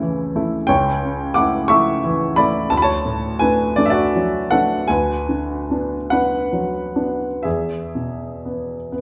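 A baby grand piano, intimate and up front with audible action noise and short sustain, plays alone through this dreamy, tender romantic nocturne fragment in a rubato 6/8, moving from A/C# through D and Bm/D to E across a range of C#2 to D6 within a moderate recital hall reverb.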